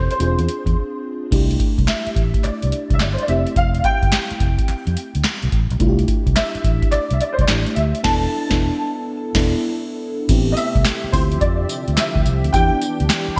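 A booming analog drum machine sits up front in this punchy, bouncy new jack swing excerpt at 107 BPM, its deep kick, crisp snare and metallic hats swung on the sixteenths and wrapped in gated reverb, with a very quiet group handclap joining at 1.9 seconds. A dark, round, foam-muted fingered electric bass anchors the low end, while a lush FM electric piano with a soft pad layer plays chorused accompaniment and a grand piano with short sustain carries the melody through ensemble chorus and digital delay. At 10.3 seconds a smooth, detuned sawtooth analog pad enters with sustained chords as the harmony moves through Am7, Dm11 and Em7, and the whole mix has a bright 1980s-style digital sheen with light reverb.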